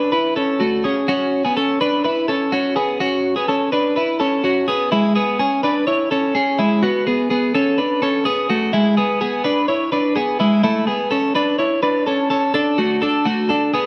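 Restless and wistful, this indie pop excerpt in straight 4/4 features a solo twelve-string electric guitar, clean, picked and compressed, sitting up front with spring reverb inside a moderate recital-hall ambience dusted with vinyl crackle, as it moves from F#m7 through C#m, Bm, E and A before arriving on D at 12.5 seconds.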